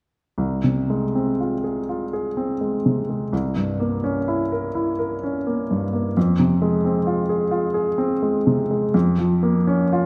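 The rhythm moves in a slow three with uneven beats, stretched and pulled by rubato so the pulse breathes rather than ticks. This is a short classical passage cut from a longer piece, elegiac and solemn in mood. A single baby grand piano carries the accompaniment from 0.4 to 10.1 seconds, its tone clear, natural and up front, spanning from C2 up to Bb4. The harmony moves through Fm/C, C7b9, Fm and then Bbm/F, with the tuning set slightly high at A4 = 445 Hz. A wet recital hall reverb with a 1.3-second decay surrounds the instrument, lending the sombre chords a resonant space.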